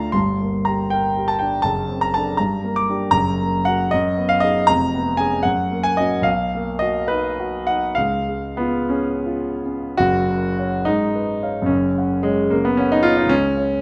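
Swaying in a lilting six-eight metre, the music pushes and pulls with free rubato, never settling into a strict pulse. This short romantic character piece for solo piano, cut from a longer work, carries a bittersweet, stormy mood. The warm concert grand sits up front with a deep bass, its close, detailed sound framed by a moderate recital-hall reverb. A brooding minor opening gives way at 3.1 s to a brighter major colour, with rich seventh chords passing through before a new section begins at 10.0 s. The harmony thins to a bare open chord, and the final moments from 13.3 s fall away from any chord at all.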